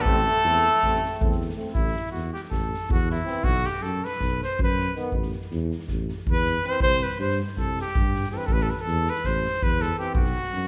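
Fiery and restless, this Balkan brass band excerpt drives along in 9/8 at 321 BPM (eighths), with a clear, up-front cornet carrying the melody and taking a solo from 1.7 s to 10.7 s, a mellow cor anglais adding a brief soft-edged second line until 1.4 s, a bright, distant trombone and a warm euphonium with light vibrato filling in the accompaniment, a dark, smooth-topped tuba holding the bass, and a polished street-band drum kit with a boomy kick and medium-tuned snare, all set in the moderate reverb of a recital hall as the chords move from Am through A5, B5 and C5.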